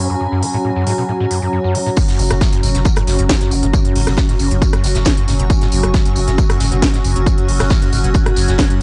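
A straight 4/4 pulse at 136 BPM drives this driving, industrial slice of peak-time techno, cut from a longer piece and tuned slightly low to A4 = 439 Hz around an F#5 chord. It opens on a squelchy, resonant acid bass riff with a filter sweep, subtle chorus, tape echo and sidechain pumping, over a detuned sawtooth drone with moving overtones and a blurred, bright granular cloud pad, both bathed in their own reverb and pumping. An overdriven techno kit enters at 0.4 seconds with a cracking snare, smooth pumping hats, rim clicks and crashes. At 2.0 seconds the drop lands: a heavy, overdriven electronic kick sits up front, joined by a thinned-out acoustic rock kit of hi-hat, snare and tambourine with a big-room character, and at 2.2 seconds a deep, saturated sine sub bass holds a low F#1 under it all. The overall sound is dry and gritty, like hardware captured with its top end rolled off.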